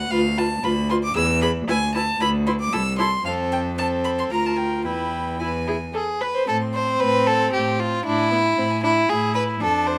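In a flexible, rubato three-beat metre, this quick classical-period movement for string quartet unfolds with a dramatic, urgent charge, cut from a longer piece. All four players bow gut strings in period style, each with a reedy edge. The first violin carries the high melody with an airy, nasal sound, while the second violin sits up front with a rich second line beneath it. The viola fills the middle with lightly vibrated accompaniment, and the cello anchors the bass with a dark tone and a smooth top, also placed up front. The harmony moves through chords such as Bdim/D, E, F and Bb/D before a new section opens at 6.5 s on Am, later reaching E/A. Close, detailed microphones and a light reverb keep the grain of each instrument vivid.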